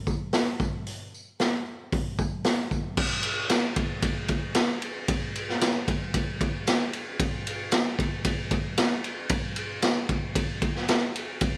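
Hypnotic and dark, this rock excerpt moves at 114 BPM in a straight 4/4, built on a raw garage drum kit of kick, snare, hi-hat, ride and crash that sits up front with a boomy kick, a medium-tuned snare and a gritty, saturated tone with a rolled-off top. A jingly, vintage-sounding tambourine runs very quietly beneath the kit, with its brightness kept band-limited. Light reverb gives everything a small-room feel, and the section that begins at 3.0 s carries the groove through to the close of this piece cut from a longer recording.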